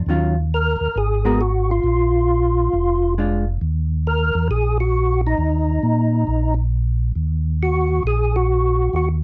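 A dark, dry production frames this late-night, soulful soul jazz organ trio excerpt in Eb minor, swinging at 135 BPM in 4/4 over an Ebm9, Abm9 and Bb7 progression that settles on Ebm at 3.6 seconds. A mellow, round tonewheel organ carries the bass line with clean chorus vibrato and slow rotary speaker, while a percussive tonewheel organ takes the melody from 0.5 seconds, fat and lightly overdriven with third-harmonic percussion, key click and the same slow rotary shimmer. A clean, picked hollow-body electric jazz guitar adds up-front accompaniment only until 3.4 seconds, leaving the two organs to carry the rest.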